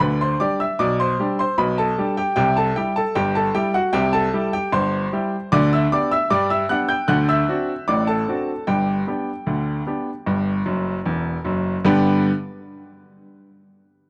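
Cheerful and lively, this short ragtime passage for solo piano moves in a straight 2/4 with a bright, brilliant baby grand placed up front, its intimate tone carrying audible action noise and long sustain across a span from E1 to G6. The close, dry studio sound has a 1970s character, touched by light reverb and small-room ambience, while the harmony travels from G through C and D7 back home to G. A piano fill arrives at 10.7 seconds, leading into a new section just before the piano stops at 12.3 seconds.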